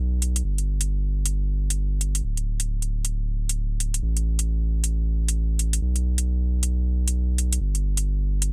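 UK garage in a two-step vein at 134 BPM, this bouncy, soulful excerpt swings its sixteenths as a deep, saturated sine sub bass with a fast attack sits up front from the start, joined at 0.2 seconds by layered, metallic electronic hi-hats with a tape-warm edge, all in a dry sound.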